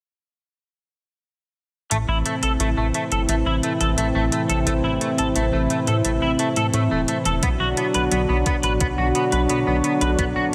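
A straight 4/4 pulse at 87 BPM drives this nocturnal, cinematic synthwave piece in A dorian, with analog, metallic electronic hi-hats carrying a tape-tinged, small-room character from 1.9 seconds. A layered, overdriven kick with a knocking punch joins at 7.4 seconds, just as the harmony moves from Am to Bm. Up front, a warm analog pad of detuned sawtooth voices holds sustained chords with a slow attack, its chorus shimmer breathing under sidechain pumping. Beneath it, a retro, glossy synth bass blends pulse and sawtooth waves with pulse-width modulation, a fast filter pluck, saturation and chorus, evolving yet mellow. A bright, twangy clean electric guitar plays a picked riff up front, colored by analog chorus, a low-pass filter, delay and slapback echo. A lush hall reverb wraps the mix in a big arena sound.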